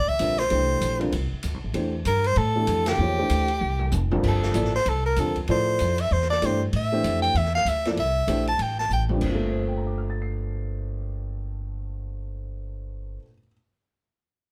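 A live small-room sound with moderate reverb frames this intense, hypnotic modal jazz fragment, swung and cut from a longer piece. An up-front, bright soprano saxophone with vibrato carries the melody and takes a solo from 4.2 seconds, over thumpy pizzicato upright bass, an intimate upright piano with audible action noise and a woody tone, and an acoustic drum kit with dark cymbals and a boomy kick that adds fills and joins a band accent at 2.8 seconds. After the drums stop at 9.3 seconds, bass and piano carry on alone.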